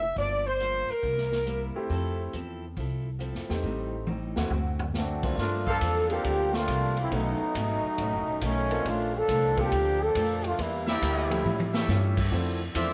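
A springy, small-room reverb frames this swinging, brassy big-band jazz excerpt at 138 BPM, where a bright saxophone section opens with the melody over boxy picked guitar, a woody tube-saturated upright bass and a punchy-kicked drum kit, an intimate baby grand piano enters at 1.8 seconds, a mellow vintage trombone section enters at 5.0 seconds and takes a solo from 5.4 seconds, and a soft-attacked trumpet section adds tape-echoed stabs, closing from 10.9 seconds.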